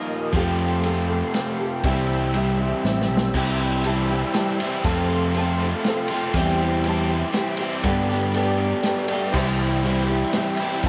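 Folk rock with a heartland rock lean, this nostalgic, warm excerpt moves in 3/4, driven by an up-front, double-tracked crunchy overdriven guitar riff and a picked electric bass, with a vintage drum kit offering a punchy kick and a rolled-off top. Behind them, a bright, shimmering twelve-string acoustic guitar with subtle chorus picks accompaniment, a grainy egg shaker sits close, a very quiet flute-like tonewheel organ holds chords through a slow rotary speaker, and a dark grand piano enters at 0.4 seconds. A drum fill at 2.9 seconds leads into the second section, and the piano adds its own fill at 8.6 seconds, all in a small room with light reverb.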